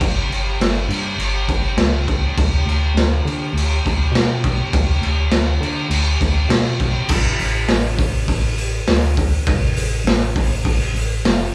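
A raw garage drum kit sits up front, its punchy kick, medium-tuned snare, hi-hat and crash sounding muffled, saturated and gritty with a rolled-off top, as if played in a small room. Beneath it, an organ-like FM bass runs from F#1 to D3 with a hollow, dark, percussive tone whose fast attack then decays. This swaggering garage rock cut moves at a straight 102 BPM in 4/4, the band captured live in one room with moderate studio reverb, and the section shifts at 7.1 seconds before the excerpt ends around 11.5 seconds.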